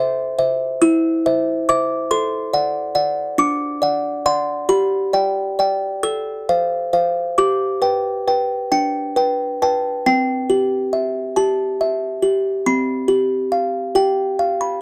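A classical lullaby for solo music box, dreamy and tender, in a slow 6/8 at 46 BPM in C major, tuned slightly low to A4 = 437 Hz. The large box sounds delicate and tinkling, its plucked tones bright and full, close-miked and dry so it sits up front in an intimate 1970s-style studio sound. Cut from a longer piece, it drifts from a rootless A minor through D7 over A and G to F over A, then at 10.0 seconds moves into a second section that settles on C before ending on G7 over C.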